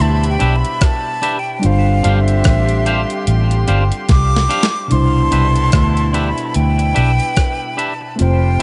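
A breathy, close-miked jazz flute with vibrato opens this tender, romantic lovers rock reggae excerpt at 73 BPM in C major, soloing over a round, foam-muted fingered bass, a worn, slightly out-of-tune electric piano with light overdrive and dub echo, and distant horns and gut-toned strings in the background. At 0.2 seconds a thumpy, overdriven 8-bit drum machine with rim clicks and a twangy, clean guitar playing echoing stabs join in, with the swung groove moving from Cmaj9 to G7sus4. A drum fill at 4.1 seconds leads into a new section at 4.9 seconds that returns to Cmaj9, all under a light reverb.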